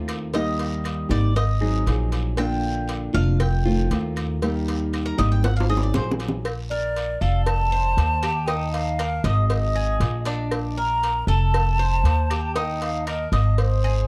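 Latin Cuban son and guajira at 118 BPM in Bb major, a warm, danceable excerpt in which a picked, metallic Cuban tres opens with a double-string arpeggio solo over a small, fingerpicked nylon-string guitar, a thumpy, up-front pizzicato upright bass, round, low-tuned cowbell and bongos, and woody claves and a raspy guiro set in the background; a drum fill closes the tres solo before the guitar stops at 6.5 seconds, and an airy, hollow silver concert flute with vibrato and tape echo takes the melody from 6.7 seconds.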